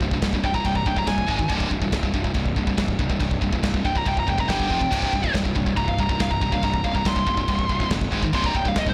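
Dark and epic, this heavy metal excerpt drives along at 140 BPM in a straight 4/4, with a double-tracked, up-front high-gain guitar riff, a growly fuzz-laden picked bass and a polished studio drum kit built on tight kick, medium-tuned snare and bright crash and china cymbals. From 0.4 seconds a distorted high-gain lead guitar with a warm tone carries the melody high above the riff, moving over chords centred on C, Ab, G and F. The whole recording sits in studio reverb and sounds blown-out and overdriven.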